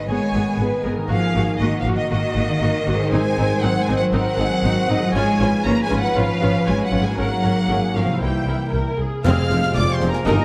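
In steady 4/4 at 118 BPM, this adventurous, determined heroic film-score excerpt sets an expressive violin melody over a woody second violin line, lush violas, rich cello and double bass sections, mellow ringing harp arpeggios and tight trombone chords, moving from G#m through C7 until an Fm turn at 9.2 seconds brings in a distant oboe, dark French horns, a very quiet tuba and snare, clash cymbals and bass drum with bright cymbals, with a clarinet note at 10.3 seconds, all on a dark scoring stage with moderate reverb.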